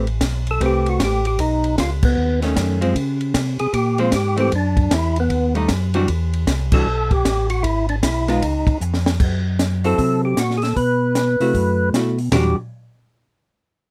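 Swinging at 154 BPM in 4/4, this soulful, late-night soul jazz organ trio excerpt in E minor sets a fat, lightly overdriven percussive tonewheel organ melody with slow rotary speaker over a mellow, round tonewheel organ bass with chorus vibrato, a clean, hollow-body archtop guitar accompanying throughout, and a dry compact cocktail kit with dark cymbals, high-tuned snare and punchy kick, with band accents at 2.0 and 6.7 seconds and a drum fill leading into a new section at 9.2 seconds.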